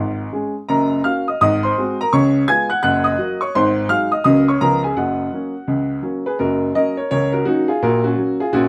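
Swung eighth notes drive this stride piano piece at a brisk 168 BPM in 4/4, giving it a playful, bouncing lilt. A solo upright piano, woody and a little boxy, sits up front and covers a broad span from F#1 up to G#6, its notes ringing with long sustain under a light reverb. The harmony stays rooted in F# major, circling through G#7 and C#7 back to the home chord in a lively turnaround. The passage falls into two statements of the same opening theme, the second starting at 6.4 seconds. Cut from a longer performance, the clip runs 8.7 seconds and settles on an F# chord over A# in the bass near the close.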